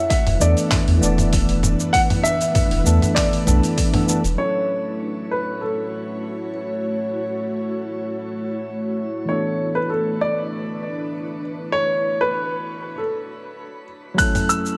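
A straight 4/4 groove from a gritty, tape-toned sampler-style kit of handclaps, hi-hat, shaker and toms, a punchy layered electronic kick and a round sine sub bass opens this blissful sunset chillout excerpt, falling away by 4.4 seconds before kit and kick return at 14.2 seconds, while a dark, intimate baby grand piano melody with audible action noise, 12-bit sampler grit, delay and shimmer reverb floats over a detuned, ethereal pad with ensemble chorus and a worn, slightly out-of-tune tine electric piano through a combo amp, set in a moderate plate reverb.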